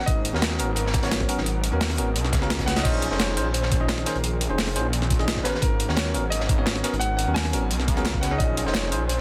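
A warm grand piano melody trailing dub echo opens this lush, soulful liquid drum and bass excerpt over a very quiet, glassy FM pad, before a menacing, detuned saw bass with a filter swell and a gritty, compressed sampler-style breakbeat kit arrive up front at 0.1 s alongside a thumpy electronic kick and a dark, saturated second breakbeat kit tucked behind with high-passed hats and snare. A bell-like tine electric piano joins at 0.3 s, sparkling through delay, and a drum fill at 2.7 s leads into a second drop.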